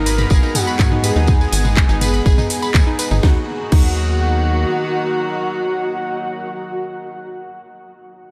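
Melancholic and dramatic, this excerpt of melodic techno in Eb minor moves at 123 BPM in a straight 4/4, opening on a drop over Abm before settling onto Ebm at 3.2 seconds. A punchy, up-front electronic kick enters at 0.3 seconds, joining a house drum kit with a cracking snare, metallic hats, handclaps, crash, ride and toms, plus a jingly, vintage tambourine, while a tight, driving sequencer bass with a fast, decaying filter pluck anchors the low end. Above it, a fat, detuned analog lead carries the melody with a sub octave, vibrato, phaser, cassette-tape colour and analog delay, shadowed an octave higher by a smooth, airy supersaw sitting in the background. A round, bright analog pluck spins chorused, delayed arpeggios, and a rich chamber string section with a reedy, gut-string period tone holds bowed sustained chords. An ethereal pad with slow attack and long release floats behind the parts, and the pumping sidechain on the melodic layers combines with a cathedral reverb to make the mix dreamy and soaked in space.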